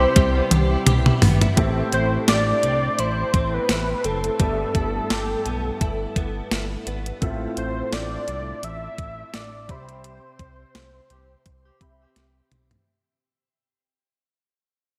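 This glossy, romantic 1980s-style pop cut moves in a slow 4/4 with a light sixteenth-note swing, driven by a clean 12-bit drum machine whose thumpy kick, medium-tuned snare, hi-hat and toms sit up front with overdrive and gated reverb, opening with a fill from 0.2 seconds. Beneath it, a smooth, dark gliding synth bass holds the low end with sustained sawtooth and square-wave tones and portamento. A warm concert grand piano with audible action noise and long sustain carries the accompaniment through chorus and shimmer reverb, while a bright, compressed, direct-recorded clean electric guitar picks a riff until 7.8 seconds. Up front, a thick, detuned unison synth lead with a sub octave and vibrato sings the melody, trailed by shimmer reverb and digital delay. A mellow, distant horn section adds very quiet stabs near the end amid a band accent, as the chords drift from Cmaj7 through Am7, G69 and Fmaj7/A back to Cmaj7 in a lush hall with a long fade-out.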